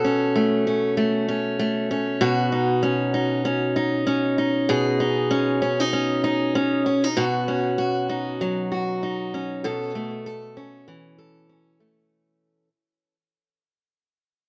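Delicate and pastoral, this short folktronica passage unfolds at 97 BPM in 4/4, with a gentle 56% swing on the sixteenths and a home in B mixolydian. A picked steel-string acoustic guitar carries everything alone from 0.0 to 12.7 seconds, ranging from B2 up to A4. Its tone is dark and up front, with audible finger squeak and a concert-instrument presence, and a touch of tape echo trails its notes. The harmony drifts from A/B through Badd9 and C#sus2/B before circling back to Badd9 and A/B. A moderate echo chamber reverb lends the space a soft halo, and the music fades out between 7.2 and 12.1 seconds, as though pulled from a longer piece.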